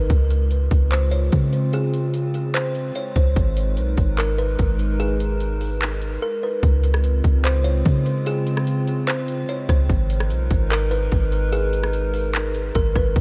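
A deep, round 808-style bass sits up front, its soft sine tone striking with a fast attack and decaying darkly beneath this dreamy, floating stretch of atmospheric cloud-rap cut from a longer piece. The tempo is 147 BPM in 4/4 with a half-time feel, and a trap drum kit enters at 0.1 seconds with hard-clipped kicks, metallic hi-hats, handclaps and rim clicks, electronic and produced, placed close to the listener. A warbling, nostalgic pad holds sustained chords with slow swells of attack and long release, its lo-fi, mellow tone thickened by chorus, its own reverb and a sidechain pumping. Over this, a kalimba plays short, woody, thumb-plucked melody notes treated with tape echo. The harmony alternates between Dbmaj7 and Abmadd9, and the drums drop out briefly from 6.2 to 6.6 seconds before the second half begins, all under a light reverb.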